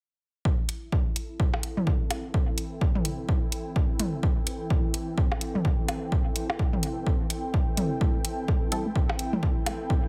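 Cool and sparse, this minimal techno excerpt moves at 127 BPM in A minor with a swung sixteenth-note feel, cut from a longer piece and resting on a single Am7 chord. A punchy analog kick sits up front with studio reverb and a small-room character, joined by an overdriven, layered hi-hat and electronic blips and toms that trail off into dub echo. An ethereal, airy pad with ensemble chorus breathes under the beat with sidechain pumping, and from 2.0 seconds a swarming, warbling drone adds tense, evolving grain in the background. Near the close, a juicy, squelchy blip pluck on A3 enters at 8.0 seconds through phaser and delay, and a muted, full-bodied dub chord stab flashes once at 8.7 seconds with its own echo. The whole sits in a digital ambience that keeps the space open and cool.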